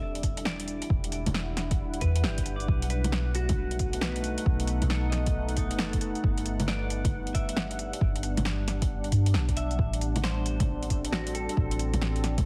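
A ghostly, nocturnal future garage excerpt in E minor at 135 BPM opens with a moody, detuned sawtooth pad with chorus and built-in reverb, a round, dark 808-style bass with tube saturation, and a bright, twangy clean electric guitar with tape echo, all three pumping against the sidechain through Em9, B7, Gmaj7 and Am7. From 0.2 seconds a deep electronic kick and an up-front deep house kit of fat snare, metallic hi-hats and bongos enter with a swung 16th-note feel and studio ambience. The whole track carries a heavily compressed radio sound with vinyl crackle and light digital reverb.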